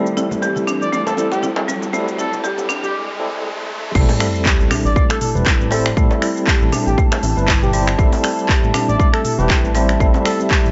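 A swung 16th-note groove at 119 BPM in 4/4 drives this dark, spiritual afro house excerpt in A minor, resting on a single Am7 chord. The opening build-up pairs an afro-pop drum kit of tape-toned hi-hats, shaker, finger snaps, handclaps, toms and crash with a drum fill, a deep, vintage djembe and bright, soft-handed congas that drop out at 2.9 seconds, while a riser and sub drop and filter sweeps on the woody, airy marimba arpeggios and the clean tine electric piano stabs lead into a short break. Beneath it all, a moody, detuned analog pad with slow attack, chorus and 12-bit sampler grit holds sustained chords in the background. From 0.8 seconds, an expressive, chorused synth lead with vibrato sings a smooth melody through tape echo. At the drop at 4.0 seconds, a punchy, layered electronic kick arrives up front with an impact and a smooth, warm sawtooth-and-square bass, and the bass, pad, marimba and electric piano pump against the kick. 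The dry, gritty hardware sound carries light reverb and a band-limited top end.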